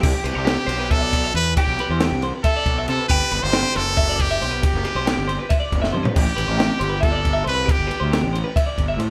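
A brilliant, up-front trumpet with vibrato sings a wistful, bright pop-style melody over bright, twangy twelve-string electric guitar arpeggios, a fuzzy overdriven fingered bass and a compact cocktail drum kit with a high-tuned snare, punchy kick and a dark, rolled-off top, all in a straight math rock and midwest emo groove in 7/8. The band sounds as if playing live together in a stone room with moderate reverb, moving through Cmaj7, Gmaj7 and Am7 chords. A drum fill arrives at 5.8 seconds, and the trumpet drops out at 8.2 seconds while the other instruments carry on until this cut from a longer piece ends at 9.1 seconds.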